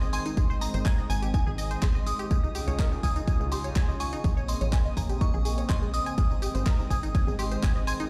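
Euphoric and expansive, this progressive house cut at 124 BPM in Ab major sets a crystalline FM bell melody with chorus, tremolo and dub echo over a warm, detuned analog pad, a phased sawtooth arpeggio and a nasal, driving sequencer bass, all pumping against a punchy, up-front electronic kick that enters at 0.4 s, while a tape-warm house kit of handclaps, hi-hat, ride cymbal and tambourine and a twinkling granular shimmer sit further back, the whole mix ringing in a stone room reverb as the chords move from Ab through Dbadd9 and Bbmadd9 back to Ab.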